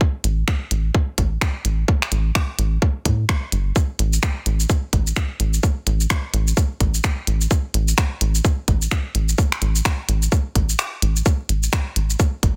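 A rubbery square-wave bass sits up front, hollow and bouncy with a resonant filter pluck, a fast attack and a dark, sustained tail, pumping against the kick as it moves between G1 and A2. This minimal techno excerpt runs at 128 BPM in 4/4 with a 60% swing on the sixteenths, and its mood is sparse and cool. A tight, overdriven electronic kick drives the groove from the start, then drops out from 10.8 to 11.3 seconds before returning. A minimal click drum kit of finger snaps, clicky hi-hat and shaker sits lower in the mix, its overdrive roughening the texture and soft clipping biting the snare. Both drum parts carry the close, boxy character of a small room, while the mix overall stays dry and arrives through a dense, heavily limited modern master.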